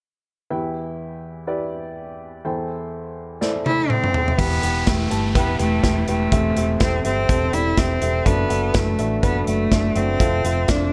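Bathed in studio reverb, this excerpt from a longer piece has an up-front sound, tuned slightly below standard pitch to A4 = 436 Hz. It is bittersweet, earnest piano-driven pop in 4/4 with a light swing on the sixteenths. It opens at 0.5 seconds with a woody upright piano carrying the accompaniment, its long sustain ringing over Em and Am7/E. An acoustic studio drum kit arrives with a fill at 3.4 seconds, its pumping room sound framing a punchy kick, a medium-tuned snare, hi-hat, toms and crash. A bowed solo cello soon takes the melody with a clear, smooth and even tone and vibrato. From 4.4 seconds a dark, round hollow-body electric bass joins, and an electronic downlifter sits faintly in the background, as the harmony moves through Em, Am7/E and Dadd9/F# to a closing Fmaj7.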